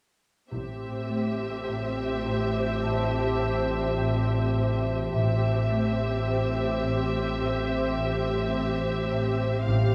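A veiled, shadowy sound fills a reverberant recital hall in this eerie, uneasy cinematic fragment, cut from a longer piece and moving at a slow 53 BPM in 4/4 over a single A minor seventh chord. Muted string sections enter together at 0.5 seconds: the con sordino violins carry a distant melody between E5 and F5, the lush violas sit close and up front with the accompaniment, and the cellos and a very quiet double bass section hold a low A beneath them. A soft-mallet marimba, woody and rustic, plays a mellow riff from the same moment, tucked into the background. At 1.5 seconds a deep, moody synth pad with a sub octave swells in with sustained chords, joined by a metallic, inharmonic drone on a low A, both softened by chorus and their own reverb. From 2.8 seconds a dry, ringing vibraphone with a fast motor vibrato adds a glinting texture high above, keeping the unease hanging in the air.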